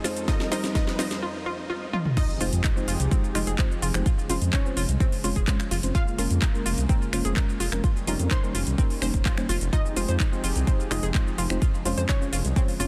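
A straight 4/4 pulse at 127 BPM drives this bittersweet, emotional progressive house excerpt in F minor, where a brief build-up of drum fill, quiet riser and a filter-swept, deep mellow chord stab gives way at 2.2 seconds to a drop marked by a quiet impact, as a punchy, up-front electronic kick (from 0.3 seconds) and a house drum kit with cracking snare and metallic hats carry a rumbling, detuned saw bass, while a lush unison pluck melody, bright analog pluck arpeggios with tape echo and a smooth, gritty pad in the background ride chords moving through Fm7, Dbmaj7/F and Bbm7/F in a dry, dense, heavily limited master.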